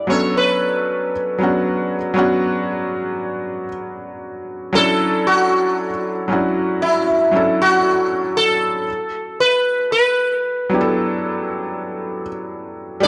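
Sensual and moody, this slow R&B excerpt at 58 BPM sways with a light sixteenth-note swing. A bright, buzzing sitar carries the melody up front, its sympathetic strings shimmering, while a felt-muted upright piano supplies soft, intimate accompaniment with audible action noise, moving through Bm9, Dmaj9 and E9sus4. Light reverb and small room ambience sit within a dry, gritty sound marked by transformer saturation and cassette tape.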